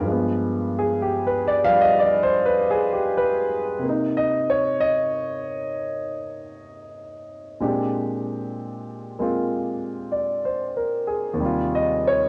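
Solo jazz piano in a smoky, moody vein, taken from a longer piece and lasting about 12.3 seconds. A lone grand piano carries everything, its tone smooth and vintage, sitting up front in the mix and ranging from deep Eb2 up to F5. The playing has a loose, rubato feel over a gentle swing, moving through G7b9, Cm7, Bb13 and settling on Eb69 near 11.4 seconds. A moderate spring reverb gives the piano a lingering halo, and the cassette tape treatment lends it a worn, homemade character. The result feels intimate, like a late-night sketch captured at home.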